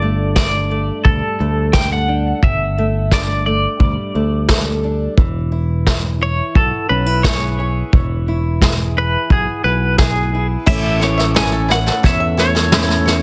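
At a steady 87 BPM in a straight 4/4, a brush-played drum kit steps in at 0.4 seconds, its dark cymbals, tight kick and medium-tuned snare sitting up front in a small room, while a punchy, picked electric bass holds down the low end. This excerpt of hopeful, nostalgic indie folk in A major opens with a semi-hollow electric guitar carrying the melody, its clean, scooped tone colored by tremolo and digital delay. Beneath it, an old ladder-braced acoustic guitar is fingerpicked with a dark, woody sound from aged strings, moving over Gsus2 and then E. At 10.7 seconds the arrangement builds as the harmony lands on A: a bright, twangy bluegrass banjo adds percussive arpeggios in the background, a picked twelve-string acoustic shimmers very quietly with octave-doubled strings, and a felt-muted upright piano offers soft, mellow, intimate support. The sound is dry, with little reverb, and the master is dense and heavily limited in a modern style.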